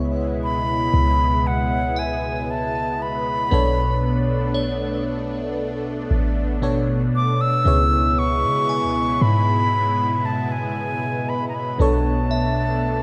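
A slow, straight 4/4 pulse at 58 BPM carries this longing, late-night R&B excerpt, where a deep, boomy 808-style bass and a bell-like FM electric piano treated with chorus and phaser sit alongside a lush, detuned sawtooth pad that also carries chorus and phaser, while a crystalline, warbling synth bell with delay glimmers in the background and a pure, straight-toned concert flute with delay enters up front at 0.4 s to sing the melody over alternating C#m7 and Bm9 chords, set in a wet concert-hall reverb.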